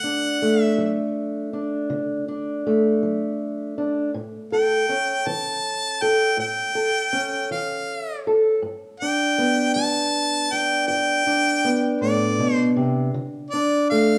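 A slow 12/8 pulse at 53 beats per minute sets up this short acoustic country blues cut, straight in feel and in D major, with a swaggering, rollicking mood. A fingerpicked steel-string guitar carries the accompaniment throughout, its dark, boxy parlour tone sitting up front as it moves from D to A at 4.1 seconds and on to G at 8.6 seconds. Over it, a clear harmonica takes the melody in a jazz-inflected solo, its scooped notes and light vibrato kept present and close in the mix. Both instruments play together from start to finish in a live single-room performance, bathed in the lush reverb of a large studio. The passage arrives back at D near its close, at 13.1 seconds, before breaking off mid-piece.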